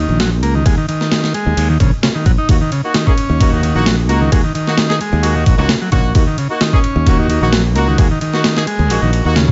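A raw, energetic breakbeat excerpt with light reverb and a dark, rolled-off top, where a buzzy overdriven combo organ riff with dub echo and a growly, punchy fingered electric bass sit up front from the start, gritty compressed sampler-style drums with a thumpy kick, snare and ride kick in at 0.2 seconds, and clear horn-section stabs with vibrato and dub echo join at 2.5 seconds over a steady E-flat minor chord.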